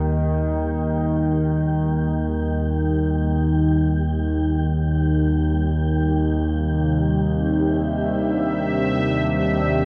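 A detuned analog drone in Eb major sits up front from the start, its sawtooth and pulse-wave tones chorused and slowly evolving, while an airy, breathy wind-like noise texture fades in above it. This is an ominous, desolate dark ambient passage in free time, cut from a longer piece. At 6.5 seconds a bright, resonant sweeping pad enters on a C chord, its ring-modulated sound and filter swell adding a full-bodied weight. Cathedral reverb and the warble of worn cassette tape give the whole recording a drifting, decaying feel.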